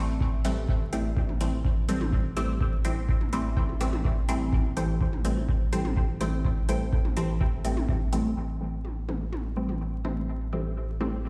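A muted, full-bodied sawtooth dub chord stab sits up front in this hazy, meditative dub techno excerpt at 125 BPM in A minor, its detuned filter plucks phased, pumping and trailing dub echo over an Am7. A round, nasal analog bass anchors the low end alongside a deep, tape-warm kick and metallic low-passed hats in a straight 4/4. In the background, a higher chorused stab riff with 12-bit grit stops by 7.5 seconds, and the kick drops out at 8.0 seconds and the hats at 8.2, leaving layered echoing toms under the stab and bass in a bare stone room with vinyl crackle.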